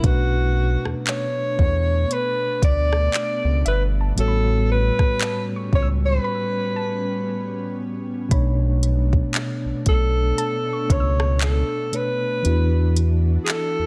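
Late-night and moody, this short cut from a longer contemporary R&B piece sits in B minor at a slow 58 BPM, with a gentle 16th-note swing in 4/4. A warm alto saxophone carries the melody up front, its vibrato and roomy, distant tone trailed by a digital delay. A mellow, clean tine electric piano supports it from the start, while a deep, round analog bass and an electronic drum kit of soft kick, smooth hi-hat, rim click and handclaps sit prominently beneath. An ethereal, airy pad enters at 1.0 seconds with slow-attack chords that pump against the beat and drift in ensemble chorus and reverb, and a soft, dark pluck adds a chorused, delayed texture in the background from 3.7 to 12.6 seconds. The harmony moves from Bm9 to A13, then returns to Bm9 before settling on Esus2, with a break at 6.2 seconds leading into the second section at 8.3 seconds, all wrapped in a digital ambience.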